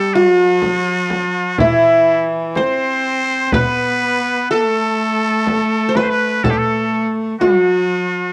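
Arabic maqam ensemble music in a soulful, melancholic 10/8 at 124 BPM: a bright-edged, fingerpicked qanun with triple strings and a cassette-tape tint carries the melody, while a rich, boxy bowed cello and a nasal, growling trumpet with straight mute, punchy and up front, play second lines, and a clay-shell darbuka, dry in the background, and a deep, large frame drum join from 0.6 to 7.6 seconds, all bathed in a wet spring reverb on a homemade cassette recording cut from a longer piece.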